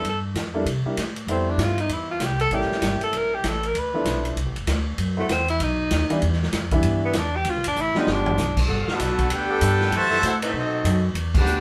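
A warm tenor saxophone solos with subtone and vibrato over clear grand piano, woody upright bass and a boomy swinging drum kit in this brassy big band swing excerpt at 194 BPM, until a drum fill at 7.8 seconds hands off to a background saxophone section at 8.7 seconds, joined by bright trumpets at 8.8 seconds and mellow trombones at 8.9 seconds, closing on a band accent at 11.3 seconds.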